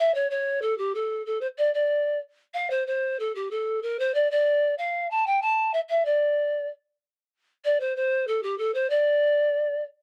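Earthy and wistful, this excerpt of Andean folk in 2/4 features a lone reedy pan flute from 0.0 to 9.8 seconds, its airy bamboo tone carrying a soft chiff and gentle vibrato in a dry, close 1970s-style studio sound.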